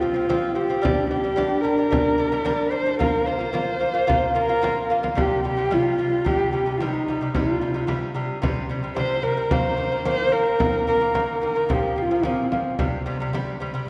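Solemn and vast, this Mongolian folk passage places a dark, husky horsehead fiddle melody with vibrato and portamento up front over delicate fingerpicked arpeggios on a bright, double-strung nylon lute and the deep, soft-handed pulse of a large, saturated frame drum, the whole performance ringing in the lush reverb of a church or concert hall, with the fiddle falling silent at 12.8 seconds just before the passage is cut off.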